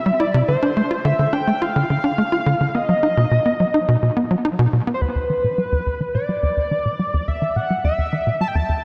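A straight 4/4 pulse at 106 BPM drives this short cut from a longer piece of ambient, sequencer-driven space music, hypnotic and expansive in mood. A tight sequencer bass carries the riff from 0.1 seconds, its punchy, nasal sawtooth-and-square tone plucked by a fast-attack filter and decaying, sitting up front with subtle chorus and analog delay. Over it, a shimmering pulse-width lead sings the melody between B4 and A5, its retro pulse-wave timbre sustained and thickened with chorus and analog delay. The harmony moves from Dm7 to B before settling into E minor at 5.0 seconds, landing on an E5 chord as the second section begins. A lush hall reverb with a 2.7-second tail soaks the mix, giving it a dreamy depth around the driving bass.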